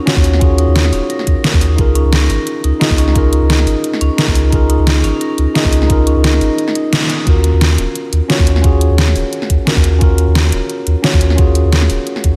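A knocking, overdriven electronic kick and a layered pop kit with a deep snare and hi-hat drive this lightly swung, lush and melancholic liquid drum and bass excerpt, over a round sine sub bass, a mellow tine electric piano with delay, and a dark, ringing vibraphone that drifts in the background through diffuse ambient delay until 7.3 s, just after a short break at 6.6 s, all set in a dreamy mix soaked in hall reverb.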